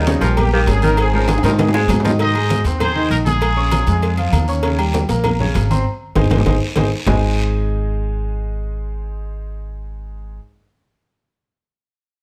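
A woody, growly upright bass sits up front in this sunny, joyful salsa excerpt at 197 BPM in Ab major, joined by a polished grand piano and a bed of bright congas, soft bongos and cowbell, raspy guiro, and ringing agogo bells and timbales. A mellow horn section and a clear baritone saxophone open the piece, with a drum fill arriving at 1.3 seconds. A tight trumpet section with vibrato then takes the melody at 2.2 seconds, and another drum fill and a band accent arrive from 5.9 seconds. The percussion stops at 7.1 seconds, leaving bass and piano under light reverb with close, detailed microphones.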